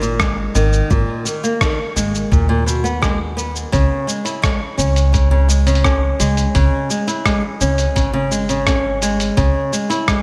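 Folktronica at 85 BPM in 4/4 with a straight feel, this short cut from a longer piece has a delicate, autumnal mood in C# dorian, tuned slightly low to A4 = 436 Hz. An up-front flamenco guitar carries fingerpicked arpeggios, its strings catching small finger squeaks, with a diffuse ambient delay trailing behind it. A woody, dark upright bass with gut strings plays pizzicato beneath it and drops out at 9.5 seconds. A lo-fi sampler-style kit of hi-hat, rim click and shaker sits low and muffled, tape-toned and compressed, and an electronic kick with a thumpy character joins at 0.2 seconds, both re-recorded in a large room. The harmony moves from G#madd9 to C#5 at 3.7 seconds, and a moderate plate reverb bathes the whole mix in a dreamy haze.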